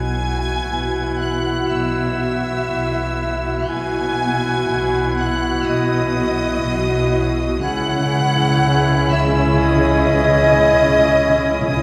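A distant, vibrato-rich violin section sings the high melody in this slow, rubato film score at 60 BPM, its longing line floating over a lush second violin line, a pure concert flute, a clear clarinet, a soft-attacked oboe, warm French horn chords, a focused viola accompaniment, and a smooth double bass with close cellos beneath, until very quiet hard-mallet timpani enter at 7.6 seconds as the harmony moves from Eadd9/B to C#m, all heard from further back in a reverberant scoring stage.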